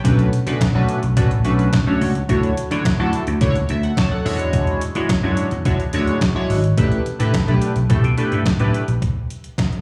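Danceable and smooth, this early-eighties boogie funk excerpt at 107 BPM pairs a growly, punchy slap bass with a glossy chorused polysynth carrying phaser and slapback echo over Bm9, Dmaj9, E13 and A9sus4, while a crisp, overdriven 8-bit drum machine with a thumpy kick and medium-tuned snare plays on until 9.8 seconds, all heard as a live gig through the club's PA with light reverb.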